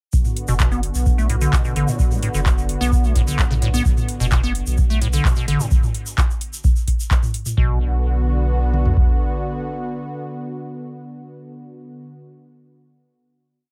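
A squelchy, resonant square-wave acid bass line with accents and slides sits up front in this hypnotic, trippy acid house piece in B minor at 129 BPM, soaked in lush chorus and dub echo over a booming, tape-coloured analog drum machine that pounds a deep four-on-the-floor kick with toms and adds metallic hats, a clap backbeat and low tom, while a round sine sub bass plays a syncopated riff, a grainy, bright tube shaker ticks hand-played sixteenths, and a thick, nasal detuned sawtooth pad sustains chords, with the pad and both basses pumping to the sidechain until the groove ends at 7.6 seconds; the sub bass and kick trail off by about 9 seconds, and the pad rings on to 12.1 seconds.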